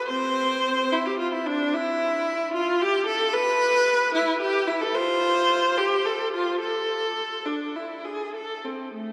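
A rich, smooth solo viola carries this flowing, solemn baroque-style suite movement in 3/4, bowed by one player with vibrato and an even tone, moving with rubato at roughly 99-113 BPM. It begins in C major and turns to A minor at 3.3 s, ranging from A3 to C5. Cut from a longer piece, the 9.1-second fragment sits in a vast, echoing cathedral whose long, wet reverb lends the up-front viola a distant glow.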